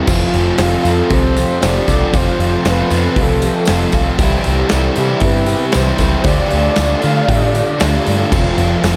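Shoegaze-leaning dream pop rock at 116 BPM, a hazy, dreamy excerpt soaked in a lush hall reverb, where an up-front overdriven semi-hollow guitar riff with reverse reverb leads over a dark, distorted fuzz guitar riff with chorus and a shimmering, octave-doubled twelve-string acoustic guitar fingerpicking arpeggios with chorus and delay in the background. A round, foam-muted electric bass and a big rock drum kit with a punchy kick and bright cymbals join at 0.1 seconds, along with a jingly tambourine tucked behind them, as the chords move from F through Cmaj7 and Dm back to F. A breathy, flute-like synth lead with soft attack, vibrato, chorus and delay sings a sustained melody from 0.9 to 7.8 seconds.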